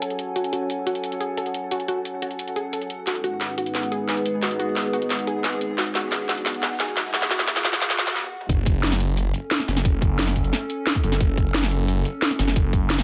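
Lightly reverberant, this tense, futuristic dark technical drum and bass excerpt at 177 BPM in F# dorian builds with a moody analog pad under chorus, phaser and sidechain pumping, a punchy detuned unison pluck arpeggio sitting in the background through a filter sweep, a warbling lo-fi tape-like pad and an up-front drum kit of cracking snare, metallic hats and toms rolling into a fill, with a very quiet riser joining at 5.4 s before a brief stop gives way at 8.5 s to a drop driven by a snarling, growling distorted saw bass on F#1 and a tight electronic kick.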